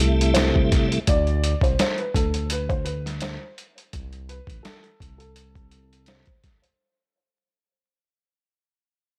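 A trip hop sampler-style drum kit drives this moody, reflective boom-bap hip-hop excerpt at 84 BPM with a light 16th-note swing, its compressed, pitched-down, muffled kit pairing a thumpy kick and medium-tuned snare with hi-hat, while a smooth gliding sawtooth-and-square synth bass slides underneath, a piping tonewheel organ with chorus vibrato, slow rotary speaker and cassette tape colour sounds only until 1.0 s, and a dark, woody, slightly detuned upright piano carries the melody over C6, Csus2 and Am chords, all beneath vinyl crackle as the whole excerpt fades out from the start.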